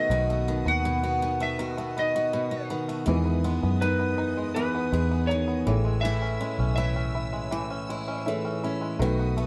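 Sunny and easy-going, this short acoustic pop passage in E major moves at a relaxed 81 BPM in a straight 4/4, cut from a longer piece. An electric slide guitar carries the melody with a dark, slightly broken-up tone and plate reverb, playing until 8.2 s before the accompaniment carries on to the end. Beneath it, a picked steel-string acoustic guitar sits up front with an auditorium character, while a twangy, percussive bluegrass banjo plays arpeggios with fingerpicks. A vintage fingered electric bass, foam-muted, round and punchy, anchors the low end up front, and a felt-muted upright piano adds mellow, intimate accompaniment in the background with audible action noise. A studio string section holds sustained chords high above with vibrato and a smooth top, as the harmony moves from B7 to Emaj7 at 3.1 s and Amaj7 at 5.7 s, all in a moderate studio reverb.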